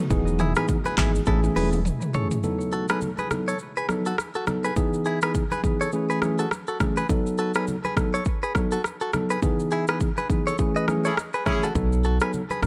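Romantic and sunny, this afrobeats excerpt moves at 103 BPM with a lightly swung sixteenth-note feel in B mixolydian, cycling through Emaj7, Amaj7 and B7. A mellow tine electric piano carries the chords up front throughout, while a deep, moody pad with a detuned, warbling vintage shimmer sits very quietly beneath it before fading at 2.4 s. An electronic deep house drum kit, with a deep kick, dark hats, handclaps, rim click, shaker and toms roughened by 12-bit sampler grit, drives the groove alongside faint, thin-skinned congas. A twangy, direct-recorded clean guitar picks a compressed riff through a tape echo, and a full sine-and-triangle sub bass with its octave appears only briefly at the start and again near the close. A drum fill marks the move into the longer second section, a band accent arrives at 9.4 s, and a smooth horn section with light vibrato slips in a short second line under a light reverb.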